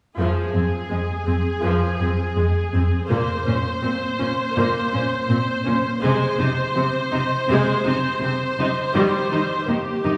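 An intense viola section with a smooth top and vibrato carries the accompaniment over an even, bowed cello section in this brooding, relentless hybrid orchestral and electronic film score at 82 BPM in F minor, moving through Fm, Bbsus2, Ab/C and Eb within a wet concert hall reverb.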